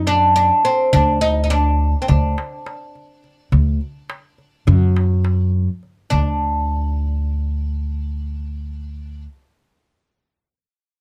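In a straight 9/8 at 209 eighth-note beats per minute, this short cut from a Turkish makam ensemble piece feels passionate and warm, with a second section arriving at 6.1 seconds. A fretless, plectrum-plucked oud carries the melody up front with a woody, double-strung tone, over a dark, thumpy pizzicato upright bass on gut strings. A small metal-shell darbuka played with soft hands adds crisp, close and dry accents until 6.4 seconds, all in a room with little reverb.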